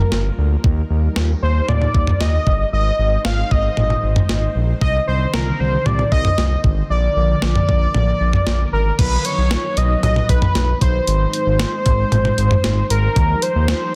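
Wistful and nostalgic, this synth-pop excerpt moves at 115 BPM in a straight 4/4 feel, centred on Eb major and cut from a longer piece. An octave-doubled lead carries the melody up front with a bold, retro sawtooth-and-triangle tone, its sustained notes colored by chorus, phaser, vibrato and a filter sweep. Beneath it, a smooth synth bass blends sawtooth, square and triangle waves with a touch of ring modulation, sounding mellow yet close, while a string machine voiced as cellos holds full, vintage chords in the background with a soft attack, long release and ensemble chorus. A clean 12-bit digital drum machine with a thumpy kick, medium-tuned snare, hi-hat, toms and crash cymbal has a sampler-style, tape-warm character, as if re-recorded in a small room. The harmony drifts from Gm7 through Eb, Ab and Cmadd9 to Bb, then shifts at 9.0 seconds to B and Ab before settling onto Ebadd9 at 13.2 seconds. 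Light reverb sits around a dense, heavily limited modern master.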